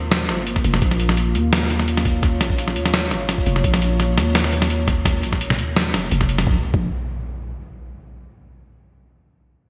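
Opening on a dark, detuned analog pad holding sustained chords with chorus and sidechain pumping over a growling, buzzy 808-style bass, this cinematic, spacious half-time drum and bass cut in Bb minor at 170 BPM adds a gritty, pitched-down boom bap sampler-style kit of hi-hat and up-front snare treated with gated reverb, a thumpy electronic kick from 0.6 seconds, and closes with an electronic impact at 6.5 seconds, all set in a lush hall reverb with bright 1980s-style digital production.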